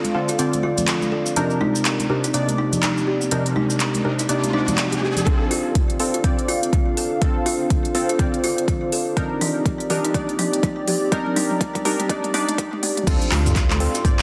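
Afro house with a warm, driving mood, where a woody, ringing kalimba arpeggio with delay and a filter sweep rides over detuned sawtooth keys stabs, a moody sub-octave pad in the background, a crisp-hatted afro-pop drum kit with handclaps, toms and crash, high-tuned congas and a grainy cabasa; a riser leads to an up-front electronic kick at 5.3 seconds for the build-up and drum fill as the hand percussion drops out, and at the drop at 13.1 seconds the congas and cabasa return while a round, deep analog bass lands, the mix set in a lush hall reverb with a dense, heavily limited master.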